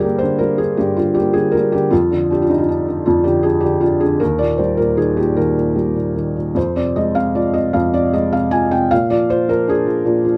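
Classical solo piano in a lyrical, melancholic vein, this short passage unfolds at a slow 52 BPM in 6/8 with a freely breathing rubato. A felt-muted upright piano plays alone throughout the 10.4 seconds, ranging from Eb2 up to Ab5, its tone soft, dark and intimate, with a boxy character. The mechanical action noise is audible, adding a close, human texture to the wistful mood. Set in F dorian and tuned a little below standard pitch at A4 = 437 Hz, the harmony moves through Gm, Fm13, Eb and Fm before arriving on Bb near 8.9 seconds. Close, detailed microphones place the instrument up front, with only a light touch of reverb around it, and the passage is cut from a longer piece.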